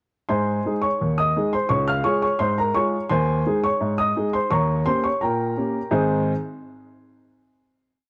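Cheerful and jaunty, this short ragtime piece in straight 2/4 features a solo upright piano, woody, boxy and intimate with audible action noise and long sustain, placed up front and carrying the tune in filled octaves over a stride bass before landing on a final chord at 5.9 seconds, all set in a moderate spring reverb within a dark, warm production.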